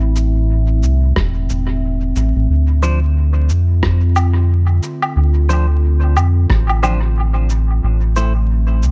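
A dry, echo-heavy mix dusted with vinyl crackle frames this hazy, spacious ambient dub excerpt in D minor at 90 BPM with a swung 4/4 feel, where a deep, round analog bass sits up front beneath a warbling, nostalgic square-and-triangle pad with chorus, muffled pitched-down shaker, rim click and woodblock soaked in overdrive and dub echo, a thumpy overdriven kick in the background from 1.2 to 6.7 seconds, and twangy clean electric guitar stabs with dub echo entering at 2.8 seconds over chords moving from Am to Dm7.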